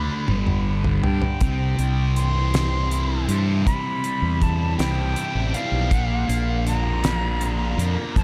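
Kaleidoscopic and hazy, this psychedelic rock excerpt rolls along at 53 BPM in 6/8, with a dry 70s drum kit entering on a fill at 0.3 s with a fat snare and tight kick, a thick double-tracked fuzz guitar riff shimmering through phaser, a dark, round overdriven fingered bass sitting up front, and an airy, reedy jazz flute melody with vibrato and delay floating above, set in light small-room reverb as the harmony moves from G5 to C at 1.4 s and on to Bb at 5.9 s.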